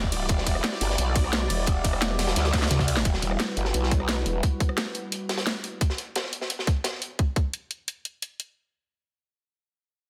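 Aggressive and tense, this excerpt of dark technical drum and bass opens on a drop over an Emadd9 chord, with a growling, wobbling bass up front and an airy, detuned sawtooth pad with sidechain pumping holding sustained chords. An overdriven electronic kick and a layered drum and bass kit with a cracking snare and bright hats sit up front, while a gritty, saturated breakbeat kit with a rolled-off top stays in the background, and a drum fill arrives at 2.5 s. A filter sweep runs on the pad from 3.1 s until it stops at 5.8 s, all within a dense, heavily limited master with light digital ambience.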